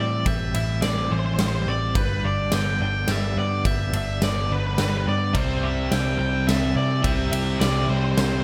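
A light studio reverb frames this brooding, melancholic post-rock fragment, cut from a longer piece and moving at 106 BPM in a straight 3/4. An octave-fuzz lead guitar carries the melody with a distorted, fuzzy tone and slapback echo, while a bright, twangy twelve-string electric guitar sits in the background playing clean, compressed arpeggios colored by tremolo and the same slapback echo. Higher still, a glockenspiel struck with soft plastic mallets rings out bell-like, metallic arpeggios in the background until 7.6 seconds. A vintage electric bass, foam-muted and picked, gives a dark, round, punchy low end, and a huge arena drum kit enters at 0.3 seconds with a punchy kick, medium-tuned snare and ride cymbal in a natural big-room sound. The harmony opens on Am7 and shifts to G at 2.0 seconds, and at 5.3 seconds a cranked stack guitar pushes up front with an overdriven riff just as the chords arrive on C.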